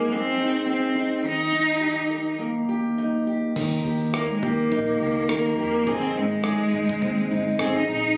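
The sound is that of a phone set down in a small room, with a club-style reverb and compression that squeeze the mix into a close, homey haze. This sunny, easy-going acoustic pop fragment moves in 4/4 with a light sixteenth-note swing. It opens on a woody, fingerpicked dreadnought steel-string guitar with old strings, sitting up front, while a single bowed cello carries the melody in a clear, smooth, even voice with gentle vibrato. At 3.6 seconds a dark, round, foam-muted electric bass enters, amped and punchy, together with a gritty, sampler-style soul kit built from a thumpy kick, rim click, shaker and crash cymbal, re-recorded in a large room. The harmony rests mostly on two chords.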